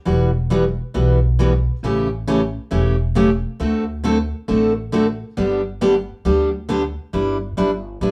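A full-bodied, picked steel-string acoustic guitar and a woody, plucked upright bass start together at 0.1 s, playing a playful, down-home western swing groove in G major at 136 BPM with a swung eighth-note feel. The guitar sits up front with a bright dreadnought ring, moving through Emadd9, A7, D7 and G before landing on Em7/G, while the bass supports it from below. Moderate studio reverb gives the sense of a band playing live together in one room, and the short passage is cut from a longer piece.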